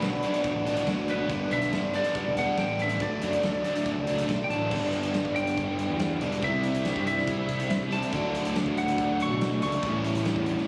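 A bright overdriven electric guitar sits up front in this carefree, upbeat indie rock excerpt, picking a riff between G2 and E4 with a touch of spring reverb. Beneath it, a darker, biting overdriven guitar plays a riff in the same range in the background, coloured by ensemble chorus and analog delay. Above them, a warm, slightly broken-up lead guitar picks a compressed melody from B4 to C#6. A round, punchy fingered bass with fuzz and overdrive holds the low end from E1 to B2, while a big, smooth acoustic drum kit in a large room drives a straight 4/4 at 141 BPM with kick, a medium-tuned snare, hi-hat and crash. The chords move through Bm, G and D before shifting at 4.7 seconds to G6, C, Dmaj7 and A7, all captured with the roomy character of a phone recording, light reverb and compression.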